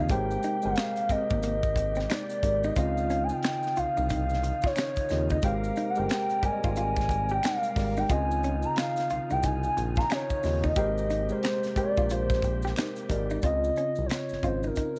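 Light small-room reverb gives this sensual neo-soul R&B excerpt an intimate sound at 90 BPM in Db lydian, swung on the sixteenths and moving between Abmaj9 and Dbmaj9. Up front, a hollow, woody clarinet-like synth lead sings the melody with vibrato and chorus over a smooth sawtooth-and-triangle synth bass and a polished, tight funk kit with a high-tuned snare, hi-hat, kick and finger snaps. A worn, slightly out-of-tune tine electric piano in lush chorus supplies the accompaniment, while a dark, picked hollow-body jazz guitar and a reedy, lightly overdriven tonewheel organ on slow rotary speaker sit in the background, the organ dropping out at 13.4 seconds, and very quiet maracas and finger snaps add texture beneath.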